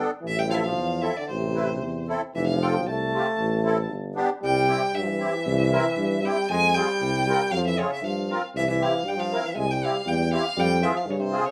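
A smooth, bowed violin carries the melody with warm vibrato in this soulful, festive klezmer excerpt, over a punchy, jazz-style trombone second line, a shimmering, reedy musette accordion and a present, classical-style tuba bass, all set in a small room and speeding up throughout its 11.5 seconds.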